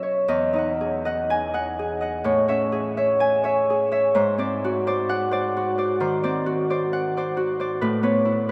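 The rhythm floats in a rubato 4/4, hovering between 57 and 67 BPM, which gives this brief classical fragment for solo harp a dreamy, peaceful calm. A single Celtic harp carries everything, fingerpicked with an acoustic, ringing tone that sits up front and reaches from E2 up to G#5. Set in E major and tuned to A4 = 441 Hz, the harmony opens on Emaj9 at 0.3 seconds, moves through Amaj7 to a colourful G#7#11 at 4.2 seconds, and comes to rest on Aadd9 near 7.8 seconds. A huge, wet ambient reverb with a 7.7-second decay places the instrument in a vast, echoing space, so each chord lingers and blurs into the next.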